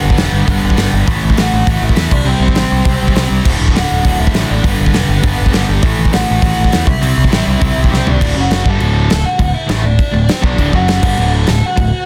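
Dense, heavily limited and nearly dry, this short cut from a longer punk rock track charges along at 202 BPM in a straight 4/4, energetic and rowdy in D mixolydian. A big acoustic drum kit sits up front, with bright cymbals, a medium-tuned snare and a punchy kick, and it plays crash, hi-hat, kick, snare and toms. Beneath it, a growling picked bass, overdriven and amped, holds the low end, while three rhythm guitars drive the riff: a scooped, compressed distorted guitar and a sludgy, double-tracked overdriven one set back in the mix, plus a tight, picked distorted part. Above them, a dark, smooth overdriven lead guitar carries the melody through a digital delay. The opening passage cycles through G, A5, C and D, then a drum fill at 7.9 seconds leads into a new section at 8.2 seconds that settles on D with touches of F#5.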